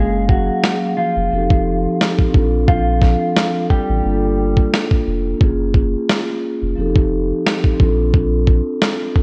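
A gritty, compressed sampler-style boom-bap kit with a thumpy kick and medium-tuned snare comes in up front at 0.3 s, driving this soulful, confident 88 BPM hip-hop excerpt in Bb major over a lightly swung groove, with a deep, round sub bass, a ringing soft-mallet vibraphone carrying a cassette-tape character, and a dark, clean fingered electric guitar melody in spring reverb that drops out at 4.7 s, all moving through a Gbmaj7–F7–Bbmaj7–Gm7 progression inside a worn, warbly old-tape sound with light reverb.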